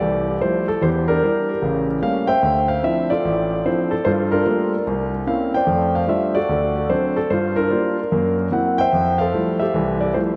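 Soaked in a dreamy plate reverb, this 10.4-second cut from a longer piece is a playful, relaxed solo jazz performance at 148 BPM in 4/4 with a swung eighth-note feel in F major, played on a warm, intimate concert grand piano sitting up front with delay, whose deep bass, long sustain and audible action noise give a polished, close presence as it moves through extended chords such as Fmaj9, A7b9, Gm9, C7b9 and Gb7#11 before arriving back on Fmaj9.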